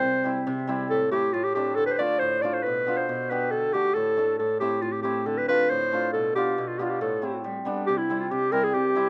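A breathy clarinet leads this festive, soulful klezmer passage in A minor, its vibrato and scooped notes lending a jazz-inflected, smooth-topped solo voice up front over a brisk 138 BPM in 2/4. Beside it, an acoustic hammered dulcimer supplies shimmering, ringing accompaniment through a minor-key progression that moves through Dm, Bdim and G before arriving on C at 7.9 seconds. The rough home-demo mix carries a light studio reverb, and the recording is cut from a longer piece, ending at 9.1 seconds.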